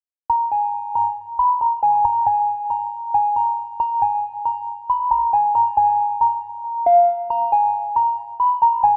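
A half-time feel in 4/4 at 137 BPM sets a melancholic and dark hip hop mood in this short fragment cut from a longer piece. A soft FM synth bell carries the melody from 0.3 to 9.0 seconds, up front with a pure, gentle tone, fast attack and decaying notes, coloured by chorus and phaser. A lush hall reverb with a 1.8-second tail surrounds it, while a low-pass filter sweep runs throughout.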